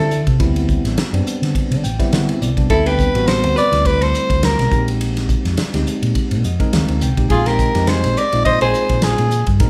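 A growling soprano saxophone leads this bright, soaring electric jazz fusion excerpt, its raspy, close-miked tone carrying vibrato and subtone as it sits up front with the melody between Ab4 and Eb5. The band plays live in one room at 104 BPM in 4/4, with a lightly swung sixteenth-note feel and a moderate large studio reverb around them. A bell-like tine electric piano with a phaser supplies the accompaniment and adds short fills at 1.6 and 6.2 seconds, while a vintage hollow-body jazz guitar, clean and picked, plays a quieter second line beneath the saxophone. Underneath, a round, amped short-scale hollow-body bass anchors the low end, and a modern studio drum kit enters at 0.1 seconds with a punchy kick, medium-tuned snare, hi-hat and ride, its sound dark with a rolled-off top. The harmony moves from D13sus4 to Bb13sus4 at 4.7 seconds, keeping the passage open and suspended as it is cut from a longer piece.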